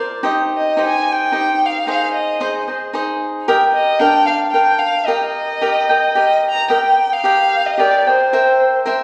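A bright, crisp picked cavaquinho opens this fragment of proud, romantic Mexican folk music in triple time, with a lone bowed violin entering at 0.6 seconds to carry the melody in a dark, woody voice with vibrato. Both parts sit up front, and the violin's line moves over shifting minor and major chords before a closing C7 at 8.3 seconds. The recording has the lush reverb of a recital hall or church.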